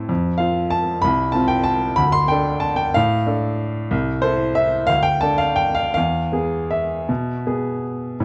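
A clear baby grand piano opens this short classical waltz excerpt on an F chord and plays alone for the full 8.2 seconds. The mood is elegant and bittersweet, with the 3/4 lilt moving freely in a rubato feel that ranges between 154-199 BPM. The harmony passes from F to D minor, then A minor over C, a bare D fifth, and arrives on E near 6.0 seconds. The piano covers a span from C2 to C6 and sits up front with a natural tone. Light reverb and a dark production surround the instrument, and it is tuned slightly below standard pitch, with A4 at 438 Hz.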